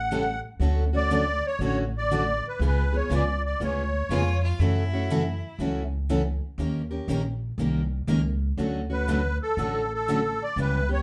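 Charming and swinging, this short excerpt of acoustic string swing in the jazz manouche style moves at 120 BPM in 4/4 with a firm swing on the eighth notes. A reedy, shimmering musette accordion carries the melody up front, wrapped in plate reverb, stepping away at 4.4 seconds and returning at 8.9 seconds. Beneath it, an upright bass with gut strings gives a woody, thumpy, dark pizzicato foundation from the very start. Two picked steel-string acoustic guitars supply the accompaniment: a plugged-in dreadnought with fresh strings and full body, with a touch of finger squeak, and a quieter, boxy parlour guitar. Just before the accordion steps away, a bright, intense violin briefly adds a bowed second line with vibrato and an airy edge. The whole group sits a little back in a lively club room, as the harmony moves from A6 through Dmaj7, C#7b9, F#m7 and D#7 before settling back on Dmaj7.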